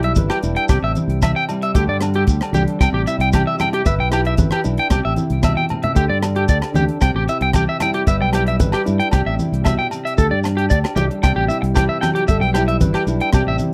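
A tight funk drum kit with a dry kick, hi-hat and rim click drives this carefree, danceable highlife guitar band groove at 114 BPM in a straight 4/4, while low-tuned congas, grainy maracas and ringing agogo bells sit in the background, and a short drum fill lands at 5.6 seconds. Up front, a round fingered electric bass and a twangy, slightly broken-up electric guitar playing arpeggios through tape echo move through a cycle of G6, C and Dsus4, with a fingerpicked flamenco guitar adding fresh-stringed accompaniment and audible finger squeak. The sound is dry and close, like a 1970s studio recording with little reverb, and the piece is cut from a longer performance.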